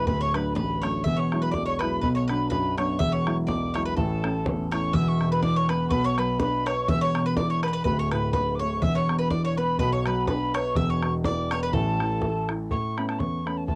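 A dark concert grand piano sits up front with deep bass, carrying the accompaniment in this bright, cheerful Celtic polka at 124 BPM in 2/4, with a light swing on the eighth notes. Above it, a breathy metal whistle plays the melody with a mellow straight tone, tongued notes and a chiff, its highs rolled off and its pitch unsteady. A bowl-back mandolin picks a second line on its doubled strings, its acoustic sparkle carrying a cassette-tape color that it shares with the piano, and it drops out at 12.4 seconds. A damped, tight bodhran enters at 0.1 seconds, its hits compressed and saturated. The tune sits in A major, moving through chords such as D, Eadd9 and Bm before the music turns toward a new section at 12.7 seconds. The moderate booth ambience and home cassette recording give this short cut from a longer piece a homespun, intimate feel.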